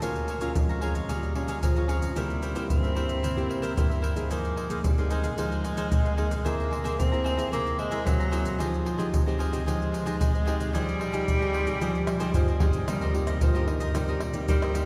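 A straight 4/4 samba-and-choro groove at 112 BPM drives this nostalgic, bittersweet fragment in F minor, carried up front by maracas, a tight surdo, pandeiro and tamborim played with hard hands and captured close and dry. Over it, a breathy tenor saxophone takes a second line in jazz style, its clear, close-miked subtone colored by vibrato as it moves between Eb3 and C4. A bright, crisp cavaquinho picks out accompaniment between Eb4 and Bb5, while a fingerpicked classical nylon-string guitar adds warm support down to F2. The harmony moves through Bbm7, C7, Fm7, Caug7 and Fm9 before a drum fill at 12.1 seconds leads into a new section at 12.9 seconds on Cm7. A wet cathedral reverb gives the piece the spacious air of a church or concert hall, and the passage is cut from a longer performance.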